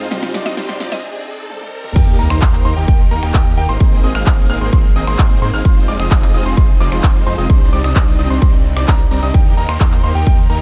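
A straight 4/4 pulse at 130 BPM drives this euphoric, triumphant festival progressive house piece in Eb major, opening on a build-up of overdriven big-room kit fills with crisp hats and a punchy snare, a background riser and sub drop, and a brief woody mallet-like synth pluck at 0.5 s. At 2.0 s the drop lands as an up-front, overdriven electronic kick and an intimate concert grand piano playing high arpeggios with delay join the huge, bright supersaw lead riff, the thick, saturated detuned saw bass and a lush background pad, all four of these melodic parts pumping with the sidechain. The chords move through Cmadd9, Eb, Abadd9 and Fm7, and the mix sits in a filtered digital ambience.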